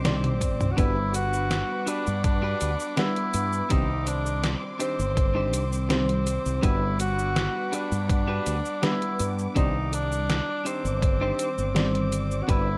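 Nostalgic and faded, this short vaporwave excerpt drifts at 82 BPM in a straight 4/4, settling in G major as the harmony sways between Cmadd9 and Gmaj7. A brief drum fill opens the first 0.8 seconds, with a detuned 8-bit drum machine supplying cabasa, hi-hat, toms and a medium-tuned snare under studio reverb, while an up-front, thumpy electronic kick arrives at 0.4 seconds. A mellow tenor saxophone carries the melody up front, its vibrato sounding distant and roomy through vintage 12-bit sampler grit and tape echo. Beneath it, a dreamy FM electric piano layered with a soft pad adds a dark, detuned shimmer of tremolo and subtle chorus, and a clean, compressed electric guitar picks a riff through chorus and echo. A fretless bass sits direct and prominent in the low end, while a bowed symphonic string section holds lush sustained chords in the background, all set in light reverb and digital ambience.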